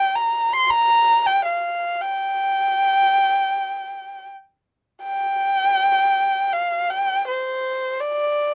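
A solo erhu carries this graceful, tender fragment of Chinese traditional music in free time, its dark, intimate tone shaped by vibrato, portamento, a soft attack and an airy bow as it moves between C5 and C6 in the G yu mode, tuned to A4 = 439 Hz. The lone player sits up front in a close, detailed recording with light reverb, across a brief passage cut from a longer piece that turns to a new section at 5.0 seconds and runs to 8.5 seconds.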